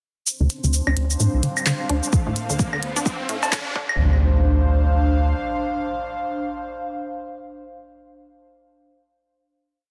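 Hypnotic and quirky, this short minimal techno piece at 129 BPM in D minor builds from 0.3 seconds as a rubbery, hollow square bass with sidechain pumping, a squelchy resonant blip pluck looping a 9-step sequence that drifts against the bar, a bubbling stepped-filter texture in the background, an airy, breathy pad, an overdriven click kit of cabasa, handclaps and hi-hat, and overdriven claves and cowbell in cross rhythm gather under a filter sweep and riser-and-impact effects, with a deep, overdriven four-on-the-floor electronic kick arriving at 2.1 seconds before a final note rings from 4.0 seconds in a dense, heavily limited master.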